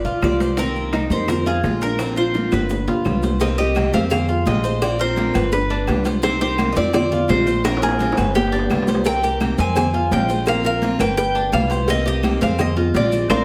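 Danceable and sultry, this Cuban son and guajira passage, cut from a longer piece, puts a metallic, double-strung tres melody up front beside a dark, thumpy pizzicato upright bass on gut strings, while a second tres picks arpeggios and a small, thumb-plucked nylon-string guitar with finger squeak adds a second line in the background. A bright, boxy parlour steel-string guitar picks accompaniment in the background, joined by ringing, high-tuned congas and vintage metal-shell timbales with agogo bells, along with very quiet round, low-tuned bongos and cowbell, woody claves and grainy maracas. Drum fills arrive at 2.0 and 7.6 seconds over a cycling minor progression, and a wet recital-hall reverb surrounds the whole ensemble.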